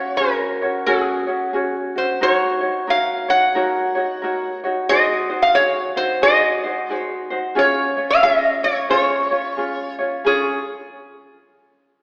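Swung eighth notes at 90 BPM in 4/4 give this sunny, dreamy Hawaiian piece, cut from a longer performance, an easy lilt in D-flat major. A metal-body resonator guitar carries the melody with a slide and fingerpicks, its bright, metallic, nasal voice sitting up front and a touch above the rest. A fingerpicked ukulele supplies light, warm accompaniment, also close and present, with both instruments playing from the start until 10.6 seconds. The harmony moves from Gbsus2 through Ebm7 and Ab7 before settling on Db at 7.6 seconds, and a new section begins at 10.3 seconds. A heavy concert-hall reverb with a two-second tail surrounds the pair, while a thin AM-radio tone colors the recording.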